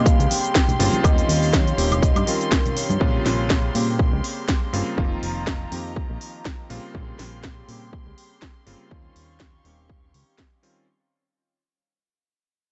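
A fat, tube-saturated analog bass with a detuned sawtooth bite and a filter sweep drives this groovy, sleek nu-disco passage. A punchy, up-front electronic kick and a house kit of cracking snare, crisp hi-hats, cabasa and woodblock set a lightly swung groove, while soft-handed congas sit in the background from 0.3 to 3.0 seconds. A clangy vintage electric grand piano pumps with sidechain under a low-pass filter, a dark, intimate violin section holds bowed sul tasto chords, and a metallic, ringing vibraphone melody with analog delay sounds only until 3.7 seconds, all in a dry, gritty mix that fades out across this short cut.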